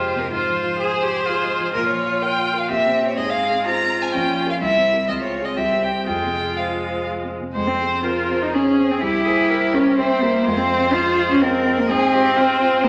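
A bowed violin, viola and cello enter together with a concert grand piano in this restless, dramatic excerpt from a quick classical-period movement for piano quartet in triple time. The up-front violin carries a smooth, even melody with vibrato, while the expressive cello sings a second line with vibrato and portamento, and the close, rich-toned viola and the deep-bassed, warm piano fill in the accompaniment. The minor-key harmony pushes through a diminished chord and a dominant seventh before a second section begins at 7.6 seconds, all set in a stone room's reverberant ambience.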